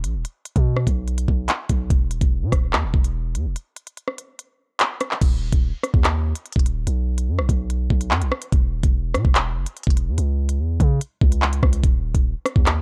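Tense and ominous, this drill cut from a longer hip hop piece moves at 145 BPM in 4/4 with a half-time feel. An electronic drum kit sits up front with a knocking kick, crisp hi-hats, handclaps, rim clicks and crash cymbal, while a deep, long 808-style bass, also up front, with a sine tone, fast attack and decaying sustain spans Eb1 to Db3. A break arrives at 3.6 seconds before a new section opens at 5.2 seconds, all carried by a dry, gritty cassette-tape recording in a digital ambience.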